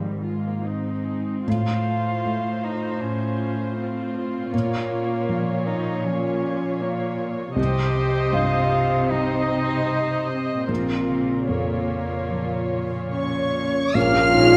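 Set in a moderate scoring-stage reverb, this bittersweet, longing piece of emotional cinematic film score in a free rubato 4/4 opens with a veiled, con sordino solo cello carrying the melody over a thick-felt upright piano with audible action noise, a smooth-topped muted viola section, a dark muted cello section on the bass and a ringing, thumb-plucked harp in the background, until at 13.1 seconds a close muted symphonic violin section takes the melody high above a hollow flute and a tight, warm French horn section, with a clear oboe, a very quiet clarinet, a distant muted violin section and a soft-attacked muted double bass section joining in the final moments.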